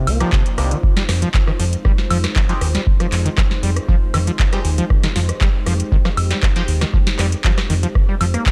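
A straight 4/4 pulse at 118 BPM propels this trippy, driving acid house excerpt. A deep, tape-warm electronic kick sits up front, joined by a booming analog drum machine whose crisp snare, metallic hats, handclaps, rim click and woodblock sound re-recorded in a large room. Underneath, a round, detuned sawtooth-and-sine bass with tube saturation pumps against the kick, while a rubbery, resonant acid bass riff with a filter sweep rides above it, overdriven and smeared by lush chorus and tape echo. A moody, full-bodied pad with a slow attack holds sustained chords from Cm7 to Fm7, ducking in time with the kick. A nasal, band-passed chord stab with ring modulation and phaser flickers brightly through cassette grit and tape echo until 6.7 seconds. The whole mix has a dry, gritty hardware character with transformer saturation.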